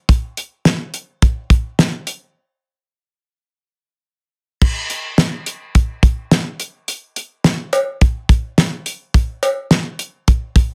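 The recording has a dense, heavily limited modern master with a moderate studio reverb that adds a short sense of room. This is a cool, nocturnal pop fragment in a straight 4/4, cut from a longer piece and carried entirely by a damped 70s drum kit that sits up front from 0.1 s to 10.7 s. The acoustic kit sounds dry and rolled-off on top, with dark cymbals, a fat snare and a tight kick. Cowbell, hi-hat and crash cymbal fill out the kit alongside the kick and snare. A repeated section shapes the brief passage, with a break from 2.4 s to 4.6 s before the pattern returns.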